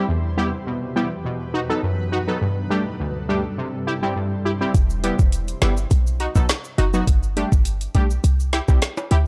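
Straight 4/4 dancehall at 103 BPM in E minor, bouncy and hypnotic, cycling through Em, B, Gsus2 and C in this cut from a longer piece. Bright, detuned sawtooth brass stabs with a filter pluck and chorus sit up front throughout, opening over a blurred, sidechain-pumped granular cloud pad with its own reverb. At 4.7 s the pad stops as a punchy, sine-based 808-style bass and an electronic drum kit with a knocking kick, woody snare and metallic hats arrive, joined by softer tube shaker and timbales played with hard hands in a small room, all in a dark digital ambience.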